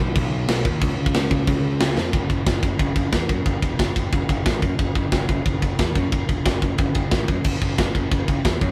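A growly, fuzz-laden picked electric bass opens this short heavy metal excerpt in F# minor, its bright, overdriven tone driving a relentless, epic mood at 180 BPM in a straight 4/4. A tight, up-front acoustic drum kit joins almost at once, with a tight kick, medium-tuned snare, crash and ride cymbals, and a fill at 2.0 seconds carries the music into a new section at 2.1 seconds. The pair sounds like a band playing live together in a moderately reverberant studio room.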